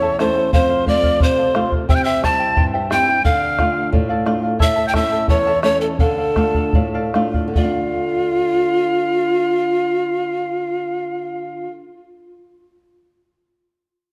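A breathy bamboo pan flute carries the melody up front with vibrato, crisp chiff and tape echo, while a reedy cane quena plays a higher, airy second line, over fingerpicked charango with shimmering double strings and a fingerpicked flamenco guitar with fresh strings. A round bombo joins at 0.2 s and drops out at 7.9 s, as this festive yet melancholic Andean folk excerpt in 2/4 slows between 4.6 and 7.6 seconds before moving into a new section. The dark production sits in a moderate concert hall reverb.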